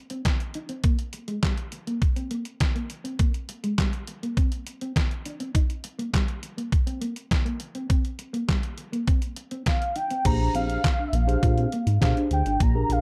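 Dark, digitally ambient production frames this danceable early-eighties boogie funk clip, cut from a longer piece and moving at 102 BPM in a straight 4/4. From the start, a clean, fingered electric guitar riff shimmers through lush chorus over an up-front, detuned 8-bit drum machine with a thumpy kick, medium-tuned snare, handclaps, hi-hat and crash, its tape-warm hits re-recorded in a small room, while the harmony moves from Bb7sus2 to Cm7. A velvety, detuned unison synth lead with vibrato and slapback echo enters at 9.7 s. At 10.2 s a glossy, evolving pulse-wave synth bass with a moving notch and a mellow tine electric piano heard through its built-in speakers join as the chords shift to Bb13.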